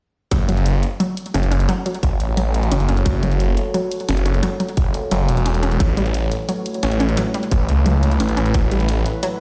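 Opening at 0.3 s with a tight, up-front electronic kick, a layered electronic hi-hat, a growling, detuned distorted saw bass and a punchy, wave-folded unison pluck playing delayed arpeggios, this aggressive, tense stretch of dark technical drum and bass at 175 BPM in F# minor brings in a deep, moody ambient pad of sustained chords with chorus and built-in reverb at 1.3 s, the bass, pluck and pad all pumping to the sidechain as the harmony moves from F#m to A at 5.8 s, heard as if over a big sound system in a bare stone room.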